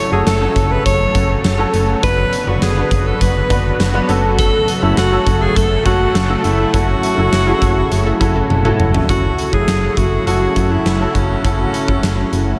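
A bright, close-miked alto saxophone with vibrato carries the melody through a diffuse ambient delay in this dramatic, nostalgic 1980s-style pop excerpt in F# minor at 102 BPM, over a clear concert grand piano with analog chorus, an airy, detuned resonant pad, a punchy, dark FM bass, and a huge arena drum kit with a punchy kick that plays a fill from 8.5 s, as a very quiet, funky polysynth stab appears at 8.1 s, all set in a dreamy mix soaked in long reverb.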